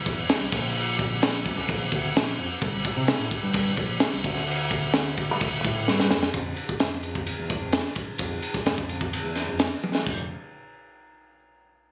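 Growling fingered electric bass and a crisp fusion drum kit enter together at the very start of this intricate, wistful math rock and midwest emo passage, cut from a longer piece in a straight 4/4. The overdriven bass sounds direct and amped, with a rough, warm edge. The acoustic kit is up front, pairing a punchy kick and a high-tuned snare with crash, ride and toms, while its small room pumps audibly around it. A drum fill at 5.9 seconds leads into a new section at 6.3 seconds, and another fill arrives near 9.8 seconds before a brief closing section. The whole recording has the feel of a phone capturing the band in a club, with only a faint trace of reverb.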